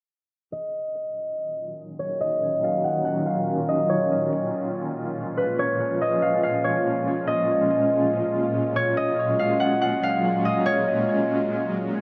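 A half-time hip hop groove at 142 BPM carries this dreamy, floating passage cut from a longer piece, where a ringing, fingerpicked concert harp melody enters at 0.5 s through a low-pass filter and dub echo, a cloudy, granular, detuned pad with tremolo and its own reverb joins at 1.7 s on sustained chords moving from D#m9 to A#m7 to F#maj9, and a filter sweep plus a wet plate reverb give the echo-heavy mix its blurred, drifting sheen.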